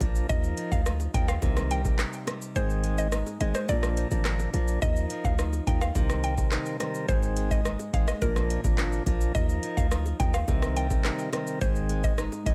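A sunny, bouncy dancehall groove in Eb major moves at 106 BPM in a straight 4/4, cut from a longer piece. A booming, overdriven analog drum machine sits up front with a deep kick, metallic hi-hats, handclaps, rim clicks and shaker, sounding as if re-recorded in a small room, while a boomy, sine-like 808-style bass with a fast attack and decaying tail anchors the low end. A lightly overdriven tonewheel organ with key click and a stopped rotary speaker pumps underneath, alongside bright, boxy fingerpicked flamenco guitar arpeggios on fresh strings, complete with finger squeak, and tight, high-tuned bongos played with hard hands, very quiet in the mix. From 0.3 seconds a woody, round FM mallet-like synth pluck carries the melody, dressed in chorus and digital delay, over a cycling Ebsus2, Cm7, Ab and Bb progression. The kick drops out between 2.6 and 4.8 seconds before returning, and the whole mix stays close and dry with little reverb.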